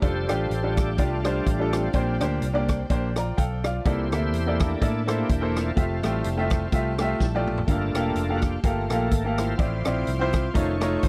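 Uptempo gospel at 125 BPM in F major, this jubilant, soulful passage, cut from a longer piece, swings its eighth notes in 4/4 with a dry, close 1970s-style studio sound. A shouting tonewheel organ carries the solo throughout, its full tone lightly overdriven with key click, chorus vibrato and a slow rotary speaker, and it stops at 10.9 seconds. Beneath it, a brilliant grand piano with short sustain plays up-front accompaniment and adds a fill from 2.9 to 3.9 seconds, while a round, amped fingered electric bass anchors the low end. A swinging big-band drum kit, punchy in the kick with a medium-tuned snare and a big-room acoustic character, works hi-hat, rim click and toms, and breaks into a fill at 7.2 seconds. Very quiet bowed strings, played sul tasto with a soft attack, hold intimate sustained chords high above, as the harmony moves through rich extended chords such as F69, C13 and Gm9 before landing on F7b13.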